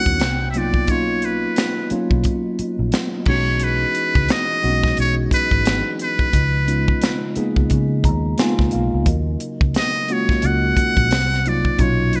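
Bright, 1980s-style digital production with light small-room reverb frames this introspective, late-night neo-soul R&B excerpt, where a buzzy, thin metal-muted trumpet sings a jazz-style solo melody up front over mellow tine electric piano chords that break into a fill from 7.7 to 9.1 seconds, a soft, flute-like tonewheel organ with chorus vibrato and slow rotary speaker in the background, a dark, round foam-muted fingered electric bass, and a tight, dry funk drum kit with a high-tuned snare and gated reverb, all over a swung sixteenth-note feel.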